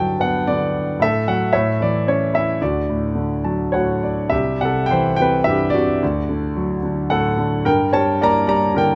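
A concert grand piano opens on a Gmaj7 chord. Its tone is smooth and vintage with a deep bass, set up front by close, detailed microphones and a light reverb. This is a lyrical classical piece for solo piano in D major, hopeful and warm in mood, moving at 110 BPM in 3/4 with a flexible, rubato feel. The harmony passes through F#m7/A and A before settling on Dmaj7, and a piano fill from 3.2 to 4.3 seconds leads into a new section built on C, then D, and finally G minor, before the passage breaks off at 9.0 seconds. Across this short stretch the playing spans from a low C2 up to Bb5.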